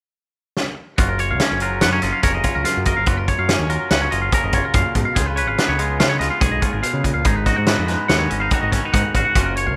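A loose indie drum fill at 0.6 seconds kicks off this bright, playful math rock and midwest emo excerpt in 5/4 at 143 BPM, landing at 1.0 seconds on twangy clean electric guitar chords, a second picked guitar spinning arpeggios through slapback echo, and a round, overdriven bass, while gritty, fat-snared drums sit up front over an F#maj7, C#7 and G#m7 progression in a rough home-demo room.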